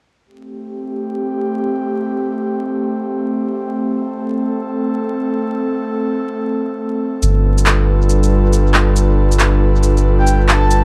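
Future garage at 138 BPM in A minor, swung on the sixteenths, with a rainy, melancholic mood in this short cut from a longer piece. An airy, breathy pad with chorus and a gritty vintage sampler edge sustains Am7 from the start, moving to G7 at 7.2 seconds as a deep, round dub sub bass and overdriven electronic shaker and handclaps come in up front. At 10.2 seconds a flute-like synth lead with subtle chorus, vibrato and tape echo appears high above, all set in an echo-heavy mix with light digital ambience and vinyl crackle.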